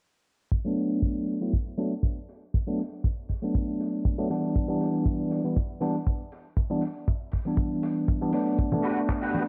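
Nu-disco at 119 BPM with a gently swung sixteenth feel, this sunny, groovy excerpt sits on an Em11 chord under a filter sweep, with a tight, dry kick up front and a damped 70s kit of handclaps and hi-hat with a rolled-off top sitting very low in the mix. A clean tine electric piano, heard through built-in speakers, carries the accompaniment between E3 and E4 with sidechain pumping and analog delay, and the kick, kit, piano and guitar all share a cassette-tape grain, with light reverb and a small-room, home-recorded haze over the whole. Near the end, close congas enter at 8.7 seconds and a twangy, slightly broken-up picked electric guitar riff with ensemble chorus arrives at 8.8 seconds.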